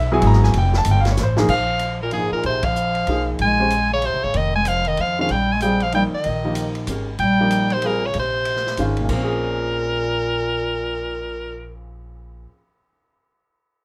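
A swung 3/4 pulse at 190 BPM drives this spiritual, intense modal jazz passage in Bb dorian, cut from a longer piece. Upright bass and grand piano open together, the bass plucked, woody and thumpy in the low register, the piano polished with short sustain as it comps through shifting chords. A vintage drum kit with dark cymbals, a punchy kick and a rolled-off top plays a fill at 1.2 seconds that brings in the horns at 1.5 seconds. The edgy soprano saxophone takes the melody up front with forceful vibrato, while a warm bass clarinet carries a second line with scooped notes. The band hits an accent at 2.6 seconds, the harmony moves through Bb7sus2 and Eb before settling on Bbm9, and the horns play until 11.8 seconds over moderate studio reverb.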